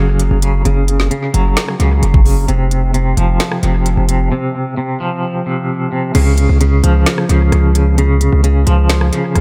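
A dry, echo-heavy mix opens this wistful yet triumphant half-time trap excerpt, where a twangy, clean electric guitar with tremolo and analog delay sits over a heavy, aggressive distorted 808-style bass, and a trap drum kit entering at 0.2 seconds with a knocking kick, woody snare, crisp hi-hats, rim clicks, finger snaps and crash, its own hits trailed by analog delay, drives toward a break at 4.3 seconds before a new section begins at 6.1 seconds.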